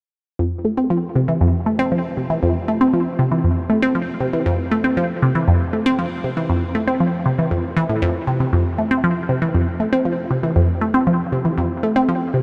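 Set to a straight 4/4 pulse, this cosmic, luminous ambient fragment features a single resonant synth pluck playing alone from 0.4 to 12.4 seconds. Its squelchy, bright blips snap in with a fast attack and short decay, and the tone keeps evolving as a phaser and analog delay color it. The pluck sits up front, bathed in a huge, wet reverb with a 7.3-second tail.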